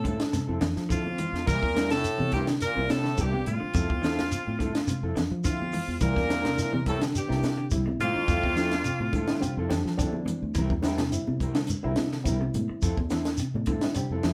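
An edgy, forceful alto saxophone leads this funky, driving afrobeat excerpt at 106 BPM in C mixolydian, sitting up front with vibrato and punchy, close-miked attack while a brilliant trumpet, scooping into its notes, and a tight, vintage-sounding trombone section carry a second line beneath it until 9.7 seconds. A compact cocktail kit with a high-tuned snare and punchy kick drives the groove, joined by a round, foam-muted fingered bass, high-tuned congas played with soft hands, and a grainy shekere. Two clean electric guitars sit in the background, one picking arpeggios and a darker one adding fingered stabs. A reedy electric piano with fast tremolo enters at 6.3 seconds and plays a fill around 9.4 seconds as the horns drop out. The harmony alternates between Fmaj7 and C7, and the band plays live in one room, glossed with a wet studio reverb.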